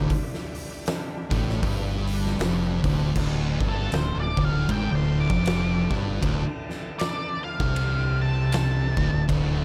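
Dry, this ominous, sludgy stoner and doom metal excerpt is built on a thick, double-tracked fuzz guitar riff sitting up front over a growling, overdriven fingered bass and an oversized low-tuned drum kit with a boomy kick, fat snare and gritty saturation in a pumping room, while a bright tonewheel organ with key click and slow rotary speaker holds sustained chords in the background and, from 3.7 s, a dark octave-fuzz lead guitar with wah and tape echo plays a solo melody.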